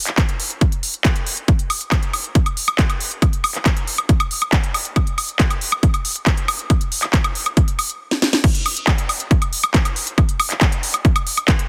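A straight 4/4 trance pulse at 138 BPM drives this hypnotic, percussion-only excerpt cut from a longer piece, where a heavy, overdriven electronic kick sits up front alongside a layered techno drum kit of cracking snare, smooth hi-hats, handclaps, woodblock and crash cymbal, also overdriven, all in light reverb and a dense, heavily limited modern master, with a drum fill at 8.1 seconds leading into a drop at 8.4 seconds.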